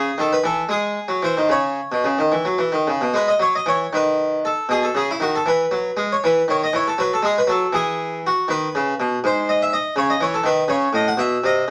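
A solo harpsichord in the Italian style, with two sets of strings, sits up front with an airy, plucked and full sound, playing a dance-like, radiant baroque-style suite movement in 6/8 with flexible rubato. The harmony moves from minor into a brighter major at 3.1 seconds and continues through colourful added-note chords, as in a passage cut from a longer piece. A moderate studio ambience and a vinyl crackle frame the instrument.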